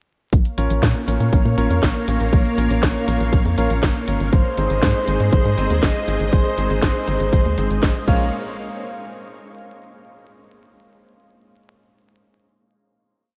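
Soaked in cathedral reverb and vinyl crackle, this dreamy, danceable and melodramatic italo disco piece in Bb minor runs at 120 BPM, with a punchy, up-front four-on-the-floor electronic kick and a disco machine beat of cracking snare, closed hi-hat and crash alongside a tight, driving, saturated, sequenced sixteenth-note sawtooth bass, while lush vintage string-machine chords with ensemble chorus sustain and clangy off-beat electric grand piano stabs with delay sit in the background, until a breathy, raspy alto saxophone with vibrato enters at 4.3 s with a delayed motif-based melody that carries the piece to a final hit at 8.3 s.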